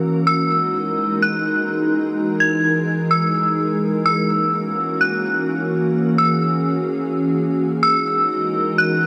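A half-time hip hop groove in 4/4 carries this dreamy, blissful excerpt, where a glassy, warbling vintage FM pad with ensemble chorus and built-in reverb swells in at 0.0 seconds with sustained Emaj9#11 and F#7 chords, and from 0.3 seconds an eerie, inharmonic detuned synth bell rings out a high melody through chorus and digital delay, both up front in a huge ambient reverb.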